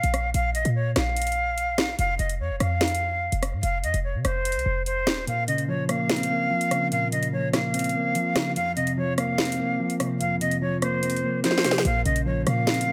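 Lightly reverberant and up front, this menacing, cold half-time drill excerpt opens with a breathy flute carrying the melody through delay, its vibrato unsteady and its highs rolled off, over sharp snare, metallic hats, rim clicks and a punchy, fast-attack, decaying 808-style bass. At 5.3 seconds the bass and kick drop away as a dark, clean, fingered electric guitar enters with spring reverb, moving through minor-add-nine and suspended chords. A drum fill then brings the bass and kick back in at 11.8 seconds.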